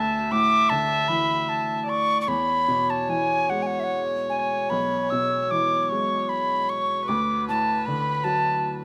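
An airy wooden whistle with a crisp, chiffy attack sings a tender, pastoral Celtic slow air up front, in a rubato 6/8, over a floating, sul tasto viola second line and a soft, felt-muted upright piano moving from Dsus2 through E to D6 in a small room of light reverb, a rough home-demo sound cut from a longer piece at 8.8 seconds.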